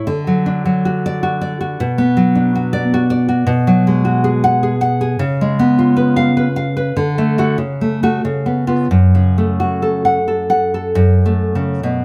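A romantic piece for solo classical guitar in 3/4 with a tender, rubato feel, cut from a longer work. The fingerpicked nylon-string guitar sits up front with a full-bodied, deep tone across a broad range, moving through D, Bm and C#7 harmonies before settling on F#m around 8.9 s, then shifting to a new section at 11.0 s. Close, detailed miking captures the instrument intimately, with light reverb adding a gentle sense of space.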